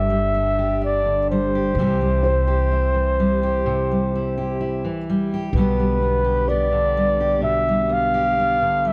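A breathy flugelhorn carries the melody up front in this melancholic, reflective acoustic folk-pop ballad, its mellow, whispered tone shaped by vibrato, a soft attack and scooped notes in an intimate jazz style. Beneath it, a fingerpicked steel-string acoustic guitar, also up front, supplies the accompaniment with the sparkle of fresh strings and an occasional finger squeak. An upright bass plucked on gut strings adds a woody, thumpy low end, while a felt-muted upright piano plays very quiet, dark arpeggios with its action noise audible under the thick felt. The piece moves slowly at 63 BPM in a straight 4/4, and all four parts play throughout this 8.9-second cut from a longer piece as the harmony shifts from G5 to C at 1.8 seconds and to G/B at 5.5 seconds. Light reverb and a dark, warm production give the whole a hushed, close-up feel.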